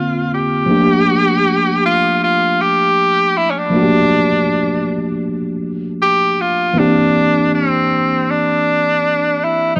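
A dry, close 1970s-style studio sound with moderate booth ambience frames this sweet, smooth reggae fragment, cut from a longer piece, at 79 BPM in 4/4 with a swung 16th-note feel: a bright, vintage tenor saxophone carries an up-front, pop-style solo melody with vibrato and tape echo, while a worn, slightly out-of-tune tine electric piano, clean through a combo amp with slapback echo, accompanies over chords moving from C9sus4 to Gm9 at 0.7 seconds and to C9 at 6.8 seconds.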